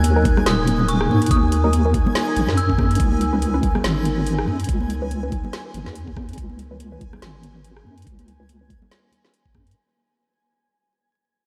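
Deep dubstep at 142 BPM in a half-time 4/4 feel with swung 16ths, heavy and brooding, this short cut from a longer piece fades out across its full 9.8 seconds while the harmony moves from Eb minor to Db minor seventh at 3.0 seconds. Up front, a deep, soft wobble bass built from square and sine waves with chorus anchors the low end, joined from 0.3 seconds by a knocking, layered electronic kick. A garage drum kit with a woody snare, metallic hi-hats and rim clicks runs throughout, while ringing congas sit in the background under dub echo. An eerie, inharmonic FM bell with chorus, phaser and dub echo carries the melody only for the opening 3.0 seconds, over a moody analog pad of slow-attack sustained chords with ring modulation and a sub octave. A muted, very quiet filtered dub chord stab with phaser plucks through most of the passage, and a reversed, granular swelling texture adds a bright glint on Ab5. 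The dreamy mix is soaked in huge ambient reverb and laced with vinyl crackle.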